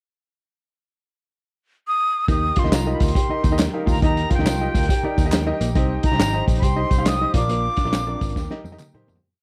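A swung 4/4 groove at 138 BPM drives this short, uplifting piece of uptempo 1960s-style soul in Eb major. An airy metal jazz flute with vibrato opens in the pickup bar with expressive, motif-based call phrases. At 2.3 seconds the full band arrives: a muffled, lo-fi vintage drum kit sits up front with a tight kick and a backbeat soul groove, and a round, foam-muted picked bass plays a syncopated, melodic line with ghost notes. A clear, slightly worn grand piano adds close-voiced rhythmic chords, audible action noise and a boxy intimacy. Behind them sit a dark, clean electric guitar with tube saturation repeating a compressed fingered figure, a very quiet hollow flute group holding a sustained pad, and tambourine and handclaps on the backbeat. The harmony moves from Eb through Cm and Bb back to Eb in a dark, dry production that fades out from 7.5 seconds, with a drum fill at 8.4 seconds closing the piece.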